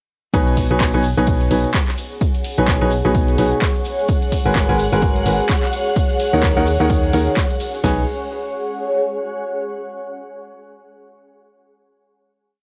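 Piano house with a joyful, uplifting glow, built on a clear, up-front baby grand piano chord riff with cassette tape grit and tape echo over a round FM bass, a punchy overdriven analog drum machine driving a four-on-the-floor kick with a second machine adding claps, hats, ride and shaker, a very quiet looped acoustic breakbeat, and a cloudy granular pad drifting in at 1.6 seconds, while dark, distant bowed strings and a background tambourine join at 4.1 seconds before the pad rings on through the final chord from 7.8 to 9.7 seconds.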